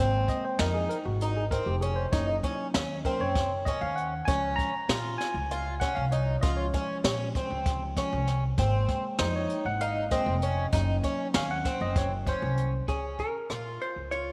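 A moderate plate reverb and lossy compression artefacts color this bright, driving progressive instrumental excerpt, cut from a longer piece, which moves in 7/8 at 195 BPM in eighths over Abadd9, Gb and Db chords. A clean, direct tine electric piano solos until 12.9 seconds over a boxy, shimmering, octave-doubled picked twelve-string acoustic guitar, a woody, dark pizzicato upright bass and a small-room brush kit, entering at 0.3 seconds, with a high-tuned snare, boomy kick, hi-hat and rim click. At 12.9 seconds, a dark, clean vintage hollow-body jazz guitar takes the melody as the piece moves into a new section.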